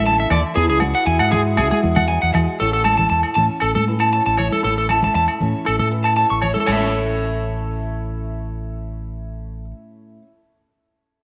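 Highlife guitar band music at 118 BPM in A major, warm and carefree, this short cut from a longer piece sets a twangy, slightly broken-up electric guitar up front playing arpeggios through tape echo, over a woody, boxy ladder-braced acoustic guitar with old strings picking the accompaniment. A round, punchy fingered electric bass sits up front, while bright, soft-handed congas and ringing agogo bells, the bells tucked in the background, play close and dry from 0.3 s until about 6.8 s. The chords move from Dsus2 to Eadd9 before settling on A at 2.6 s, all bathed in a moderate plate reverb.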